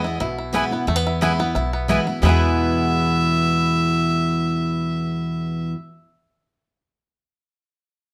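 A driving 178 BPM swung 4/4 pulse carries this rustic bluegrass snippet in E major: a bright, full-bodied picked dreadnought guitar sits up front, a twangy, percussive fingerpicked banjo carries the melody, a thumpy, woody pizzicato upright bass enters at 0.2 s, warm double-string mandolin stabs sit in the background from 0.5 s, and a clear, biting bowed fiddle with light vibrato sounds briefly at the start before returning up front at 2.2 s, set in a moderate studio reverb.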